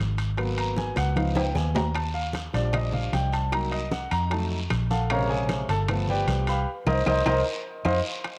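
A polished, up-front grand piano takes the solo throughout this driving, sultry Afro-Cuban jazz excerpt, its tone colored by cassette tape as it moves through a jazzy chord progression over a dark, punchy, foam-muted electric bass. Close, dry percussion surrounds them: ringing metal-shelled timbales, very quiet low-tuned congas with a bright, thin skin, round hard-hand bongos, woody claves, and a raspy guiro set back in a large room, with a drum fill at 0.8 seconds and a band accent arriving at 6.7 seconds. The home recording on cassette sits in a moderate spring reverb.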